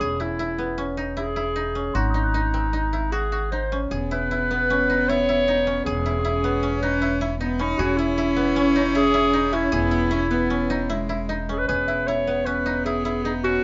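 A light reverb and a softened top end frame this restless yet hopeful contemporary chamber piece in 5/4. A vintage-toned solo clarinet carries the melody up front over mellow, fingerpicked koto arpeggios and the thumpy gut-string pizzicato of an upright bass. A bell-like celesta sweetens the background until 3.2 s and returns at 7.6 s, while from 3.9 s a single cello adds a close, airy sul tasto second line with light vibrato.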